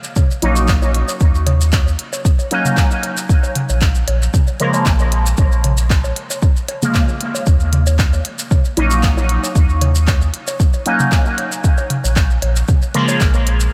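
The warm, round sine sub bass sits up front, moving between Bb1 and Eb2 with tube saturation and sidechain pumping beneath a deep, tape-warm electronic kick drum in this hazy dub techno excerpt at 115 BPM in Eb minor. A bright, juicy polysynth plays resonant stabs from Db3 to Eb4, its detuned square and sawtooth tones shaped by a filter sweep, chorus, phaser, sidechain pumping and dub echo. Overdriven analog toms and bongos, re-recorded in a small room, carry their own sidechain pumping and dub echo, while grainy, close maracas add a mellow acoustic texture from the first moment. A deep house kit of handclaps and smooth hi-hats, also touched with dub echo, rides a gentle 16th-note swing in 4/4. The harmony rests on Ebm7, drops away to an open passage at 3.3 seconds, returns at 7.5 seconds and moves to Bbm7 at 11.6 seconds, all within light reverb and digital ambience that keep the mood deep.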